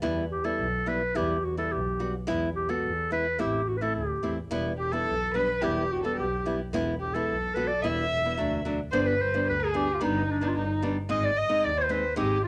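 Festive yet bittersweet, this klezmer fragment in 2/4 starts around 108 BPM and gradually speeds up, moving from E minor into G phrygian dominant at 8.9 s. An up-front, clear clarinet with a vintage, classical-style tone carries the melody over a small, fingerpicked nylon-string guitar with audible finger squeaks and a veiled, muted double bass, bowed con sordino with vibrato. At 4.8 s a dark, expressive violin joins with a second line full of vibrato and portamento, while the clarinet, guitar and violin share a cassette-tape colour within a light studio reverb that suits the home recording.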